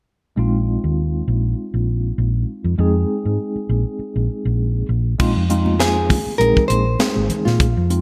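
Nocturnal and intense, this short cut of electric jazz fusion moves at 100 BPM in 4/4 with a light sixteenth-note swing. It opens on a Bb9sus4 vamp from a worn, slightly out-of-tune tine electric piano with medium tremolo and subtle chorus through a combo amp, over a dark, round, punchy hollow-body fingered bass. At 5.2 seconds a tight funk drum kit arrives with bright cymbals, a high-tuned snare and gated reverb; very quiet, distant congas played with soft hands join just after, and a full-bodied, fingerpicked nylon-string guitar takes the melody from 5.8 seconds, all within a bright 1980s-style digital production with light reverb and studio ambience.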